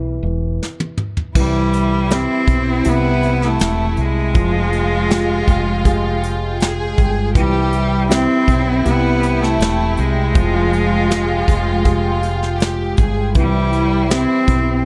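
This tender, emotional pop ballad opens on a background concert grand piano with tape echo and audible action noise, a mellow chorused analog pad and a dark, round fretless bass, before soft brushed drums enter with a fill at 0.6 seconds and a bright, intense bowed cello takes the melody with vibrato and tape echo at 1.4 seconds over a sul tasto chamber violin section, set in an echo-heavy mix with light studio reverb.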